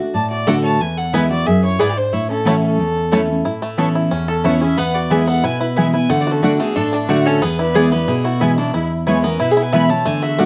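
A straight, driving 4/4 at 181 BPM propels this rustic bluegrass excerpt: an up-front dreadnought steel-string guitar picks the accompaniment with audible finger squeak, a clear, focused fiddle bows the melody with light vibrato and a smooth top, and a nasal, metallic lap resonator slide guitar adds a second line, while from 0.5 s a bright, twangy fingerpicked banjo also carries melody through tape echo and a woody, double-strung mandolin punches in stabs, set inside a dark, warm production with moderate studio reverb as the chords move through D, E and A before a new section opens on Aadd9 at 3.5 s.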